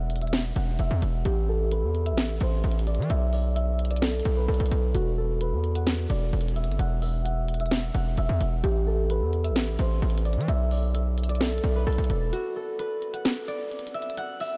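A half-time trap groove in 4/4 sets a dark, brooding hip hop mood, with electronic drums bringing a sharp snare and crisp hi-hats roughened by vintage 12-bit sampler grit. Beneath them, a distorted 808-style bass sits up front: a heavy, saturated sine tone with a noise layer, fast attack and decaying tail that sounds aggressive and weighty. An acoustic concert harp carries the melody, its fingerpicked, ringing notes softened by a low-pass filter that sweeps across the first 12.3 seconds. The harmony moves through suspended and minor colours, from E7sus2 through Am and Bm7 to E9sus4 and E7sus4. At 12.3 seconds the bass drops out and the chords stop for a short break, leaving harp and drums in light reverb until this fragment of a longer piece ends at 14.6 seconds.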